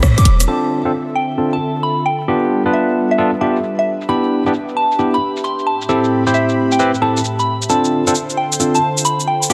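A dense, heavily limited mix with moderate plate reverb frames this skippy, late-night two-step UK garage cut at 133 BPM in D dorian, where a punchy sine 808-style bass hits on the opening band accent and stops at 0.5 seconds, an overdriven, layered electronic garage kit of swung cabasa, hi-hat and rim click runs through a filter sweep, a barky tine electric piano heard through a combo amp stabs up front from 0.5 seconds, a pure FM synth bell with phaser and digital delay carries the melody from 0.2 seconds, and a detuned sawtooth analog pad pumps beneath over Dm7, G7, Em7 and Am7.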